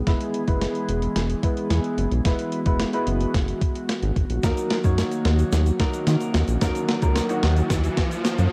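A straight dance-pop pulse opens this short, confident yet bittersweet cut, driven by a crisp 8-bit digital drum machine whose thumpy kick, medium-tuned snare and hi-hat sit up front with a tape-softened, sampler-style character. Underneath, a round analog bass, deep and dark with a fast attack, holds the low end, while a baby grand piano adds natural-sounding accompaniment, both ducking with sidechain pumping. An airy, breathy pad with a detuned, full-bodied glow and a faint noise layer sustains mellow chords in the background, shaped by chorus, pumping and a low-pass filter. The whole passage works as a build-up with a running drum fill and a filter sweep, as harmony moves from E to D#m at 4.4 seconds, where a grainy, bright tube shaker slips in quietly. An electronic riser enters in the background at 6.3 seconds, all wrapped in light reverb and captured as a cassette home recording.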